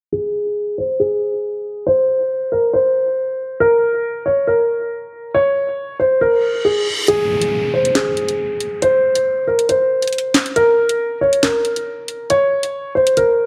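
A dark, boxy concert grand piano leads this ominous drill excerpt at 138 BPM in a half-time feel. Its mellow, intimate melody sits up front with deep bass and audible action noise, shaped by digital delay and, through the first 7.1 seconds, a low-pass filter sweep. An electronic reverse cymbal and downlifter carry the passage into the second section. There, from 7.1 seconds, a produced electronic drill kit adds a sharp snare, bright hi-hats and handclaps under light reverb and digital ambience, creating a menacing atmosphere.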